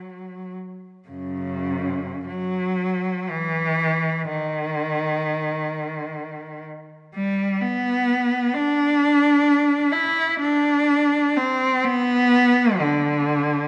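Meditative and yearning, this free-time classical passage for unaccompanied cello, cut from a longer piece and tuned to A4 = 438 Hz, features a single bowed cello that sits up front with a clear, focused tone and expressive vibrato across a range from F#2 to E4, framed by the moderate reverb of a scoring stage.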